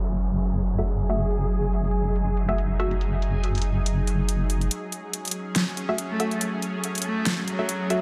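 Dark and brooding, this excerpt of deep dubstep moves with a swung half-time feel. A tense, nasal string-like drone holds sustained chords throughout, filtered by a sweep over the first 4.7 seconds, while a deep, detuned wobble bass with chorus sits up front until 4.7 seconds alongside an overdriven electronic kit with a huge snare and hi-hat and a brief background downlifter, soon joined by a dreamy reversed swelling texture and muted, mellow dub chord stabs with echo. In the closing build-up a rich, smooth bowed cello enters at 6.1 seconds, its vibrato carried by dub echo over a light digital ambience.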